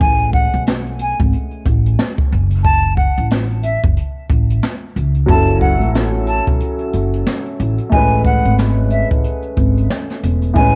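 Dark and tough, this boom-bap hip-hop fragment moves at 91 BPM in 4/4 with a swung sixteenth-note feel, cycling between Amaj9 and F#m7 chords. A breathy silver concert flute carries the melody up front, close-miked with a straight, tongued tone and an expressive touch, passed through high- and low-pass filters and cassette tape. Beneath it, a warm upright piano supplies worn, intimate accompaniment, slightly detuned, with long sustain and audible action noise, and it receives the same tape and filter treatment. A pizzicato upright bass with steel strings sits up front with a woody, dark voice. A jazz kit played with brushes adds hi-hat, a medium-tuned snare and a boomy kick, its natural studio-room sound colored by tape. The recording has the intimacy of a small room captured at home on cassette, and the drums stop at 10.7 seconds, just before the end.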